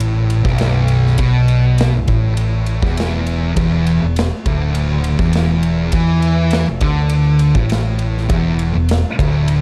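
A thick, dark fuzz guitar sits up front, grinding out a picked, distorted riff low in its register, while a second, warmer fuzz guitar plays a riff further back in the mix. This heavy, sludgy stoner and doom metal excerpt moves at 102 BPM in a straight 4/4, with a round, amped fingered bass growling underneath through overdrive and a big acoustic drum kit of boomy kick, medium-tuned snare and bright ride cymbal. The harmony shifts from B7sus4 to Dsus2 at 3.6 seconds, all wrapped in a dark production with light reverb.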